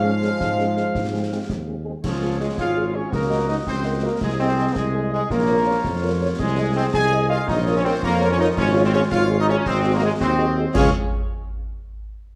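In a 6/8 at 110 dotted-quarter beats per minute with a straight feel, this rousing, proud military-style march for wind band moves through Db major and comes from a longer piece. A punchy trumpet section with light vibrato carries the melody, while a woodwind section plays a second line in the background, and a solo euphonium adds its own brief second line on F3 only until 1.9 seconds. A dark, tight French horn section fills in the accompaniment behind them. The trombone section, with its own light vibrato, holds sustained chords, and an up-front tuba with a mellow, soft attack anchors the bass between Ab1 and Ab2. Concert snare drum, concert bass drum and bright clash cymbals, captured with an acoustic small-room sound, enter at 0.2 seconds. The harmony passes through Ebm7/Db, Ab/C and Bbm before an Ab7 resolves to Db at 10.8 seconds, all within a wet recital hall reverb and a dark, warm production.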